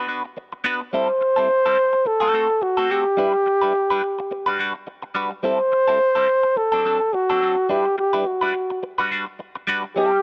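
A clean, picked electric guitar with wah and a warbly pitch drift opens this glamorous, driving disco fragment at 106 BPM with a swung sixteenth-note feel, and at 0.9 s a breathy, whispered flugelhorn with light vibrato and a soft attack takes the intimate pop-style solo melody up front over chords moving from Bm through Am7, G6 and D7 to Gmaj7, all in a dry, close 1970s-style studio sound tuned to A4 = 442 Hz.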